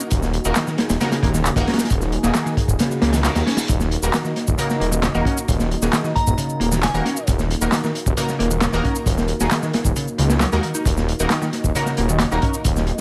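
A crunchy, saturated breakbeat kit with a punchy kick and rolled-off top drives this gritty, raw breaks excerpt, joined by an up-front, menacing detuned saw bass, a bright picked electric bass riff with overdrive and delay, a bold orchestra-hit-like synth stab with phaser, tape-warm electronic shaker and handclaps, a moody analog pad pumping in the background, a reverse cymbal at 3.0 seconds, and a brief glassy synth bell with 12-bit grit at 6.2 seconds.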